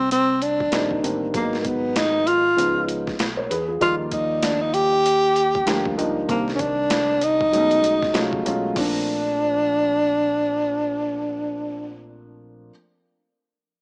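Light reverb and digital ambience give this short hip hop cut a small-speaker sound, like music drifting from a modest radio. It's a smooth, warm jazz-hop groove at 97 BPM in 4/4 with a swung sixteenth feel, set in Bb major and moving through chords such as Cm7, Abm7, Db9 and Ebmaj9 before settling on Bbmaj9. Up front, a breathy tenor saxophone carries the melody in a close-miked, whispered subtone, with soft attacks, scooped notes and vibrato. Beneath it, a dark upright piano adds mellow, woody accompaniment, slightly detuned with audible action noise and long sustain, while a deep dub fingered electric bass supplies a round low end. The boom bap drum kit is sampler-style, compressed and pitched down, with a thumpy kick, a high-tuned snare and gritty overdrive, re-recorded in a large room. The drums drop out at 8.9 seconds, leaving sax, piano and bass to carry the final stretch of this piece, which is cut from a longer one.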